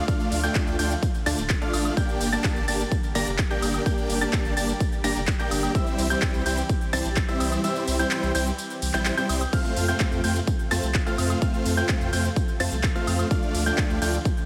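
A lush, detuned pad, a bright grand piano with audible action noise playing delayed arpeggios, and a huge, compressed supersaw riff all pump together to open this uplifting, anthemic festival progressive house excerpt, soon joined by a crisp, tape-toned dance kit of claps, hats, ride, tambourine and woodblock, a punchy overdriven kick that drops out from 7.6 to 9.5 seconds, and a deep, saturated sub bass under a Dm–Gm–C–F progression in a dry mix.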